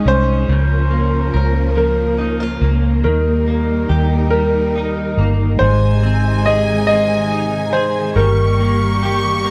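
Pop in a slow, tender and romantic 6/8, this short cut from a longer piece sets a smooth, long-sustaining grand piano melody over a bright, double-tracked clean electric guitar, lush bowed strings with soft attack and a round, foam-muted electric bass sitting up front, before a focused studio violin section adds a high second line at 5.6 seconds, all within a dark production on a moderate scoring-stage reverb.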